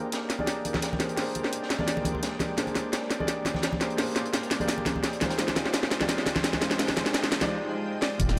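Dreamy and warm, this short cut from a longer liquid drum and bass track moves at 171 BPM in a straight 4/4, building through a lush chord progression that runs Abmaj9#11, Bb13 and Fm9. A dark, mellow grand piano carries the accompaniment through a low-pass filter and digital delay, while a shimmering, ethereal ambient pad with an octave-up shimmer and granular texture holds sustained chords in the background under a filter sweep. Two drum kits play from 0.1 s: an up-front electronic kit with a cracking snare and bright hats, layered over a gritty, saturated breakbeat kit with a high-tuned snare and rolled-off top, joined by ringing acoustic congas, and the drums carry a fill across the build-up. A very quiet riser enters at 5.7 s before a brief break at 7.5 s, and within that break, at 8.0 s, a soft, round, wave-folded pluck with chorus takes the melody on a single D5. At 8.2 s a knocking electronic kick lands with an evolving, menacing detuned saw bass on a low Eb1, all sitting in a moderate, lush hall reverb.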